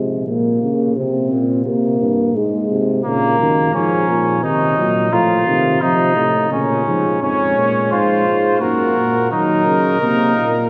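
A dark, close-miked euphonium with a soft attack and a mellow, vintage-toned bass trombone open this short classical brass canzona together, setting a serious, contemplative mood in Bb minor at 86 BPM in a straight 3/4. At 3.0 seconds a clear flugelhorn enters up front with an imitative second line, its older-sounding colour sitting just above the low brass. The harmony moves through Bb minor, a diminished chord and F over A before turning toward Db over F, Gb and Eb minor as a new section begins at 7.2 seconds. There the trumpet takes the melody, its tone soft and rounded with a light vibrato. A wet cathedral reverb with a long 4.3-second decay bathes the ensemble, giving this fragment of a longer piece a grave, spacious, churchly air.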